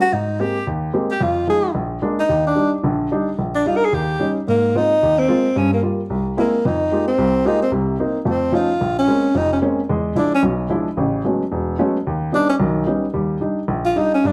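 Jazz at a brisk 221 BPM with a 60% swing on the eighths: a sophisticated, relaxed swing excerpt that moves from Eb major into Ab major at 4.5 s, where a mellow, close-miked tenor saxophone carries the melody up front with vibrato, soft attacks, scooped notes and a plate reverb before stepping into a solo at 13.1 s, while an intimate baby grand piano comps through rich extended chords such as Abmaj9, C7b13 and Amaj13 with short sustain and audible action noise, all set in a club room heard from further back.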